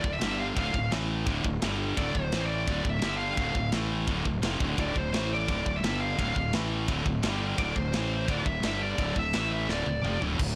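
A straight, driving 4/4 pulse at 171 BPM powers this dark, epic heavy metal passage in D minor, cut from a longer piece. A tight metal drum kit with a medium-tuned snare, tight kick, china, crash and ride cymbals and toms sits mid-forward with a rolled-off top, closing on a drum fill from 9.7 to 10.4 seconds. Up front, a growly fuzz fingered electric bass anchors the low end, while two bright, picked high-gain distorted guitars churn out the riff in the background, cycling through G5, Dm, A5 and D5. Above them, a dark, distorted lead guitar with delay carries the melody between C5 and F5. A very quiet, double-tracked, biting overdriven guitar appears only briefly at 10.4 seconds. The dry, blown-out recording keeps the whole band close and saturated.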